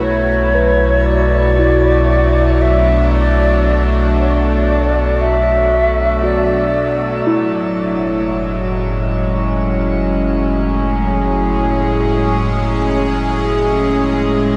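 Spacious and serene, this ambient excerpt drifts at 58 BPM in F# minor, moving from Bm7 to F#madd9 under a wet shimmer reverb with a long tail. An evolving, morphing wavetable pad sits up front with chorus and its own reverb, while a deep, round sub bass fades out across the whole 14.6 seconds and muted, felt-like synth keys play dark, intimate arpeggios in the background with chorus and tape echo from 0.5 seconds. A pure, hollow alto flute with vibrato carries the melody through tape echo until 7.3 seconds.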